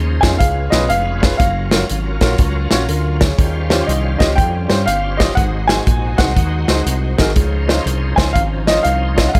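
Uptempo gospel at 121 BPM with a swung feel in Db major, reverent and uplifting, where a dark, mellow baby grand carries the melody with audible action noise over a deep-bassed concert grand's accompaniment, a bright, shouting tonewheel organ with key click and slow rotary speaker holding chords and adding a fill from 2.4 to 3.4 seconds, a lush, very quiet bowed string section, a round, punchy fingered electric bass up front, and an airy, polished acoustic drum kit of hi-hat, kick and snare, all in a dry sound moving from Db7 through Gbmaj7, Eb13 and Ab7 to Dbmaj9.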